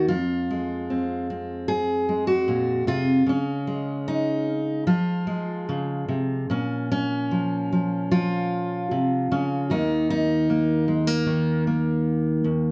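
Folk piece for solo fingerpicked steel-string acoustic guitar, intimate and reflective, moving at an unhurried 76 BPM in 4/4 with a loose, rubato feel, tuned slightly sharp to A4 = 444 Hz. The dreadnought sits up front with a full-bodied tone, ranging from Eb2 to Ab4 as it moves through Fm, Db and Bbm before settling on Eb5 near 9.7 seconds. A moderate small-room reverb lends the guitar a close, natural space across this 12.7-second fragment of a longer piece.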